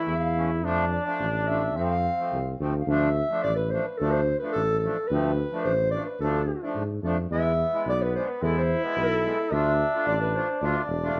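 Klezmer fragment in a soulful, festive 2/4 that gathers speed throughout, with a mellow, distant clarinet carrying the melody up front under plate reverb, a brilliant trombone with light vibrato playing a second line that drops out at 2.6 seconds and returns at 7.3 seconds, a reedy, slow-beating accordion accompaniment, and a smooth-topped tuba bass with vibrato, set in a dark, moderately reverberant studio sound.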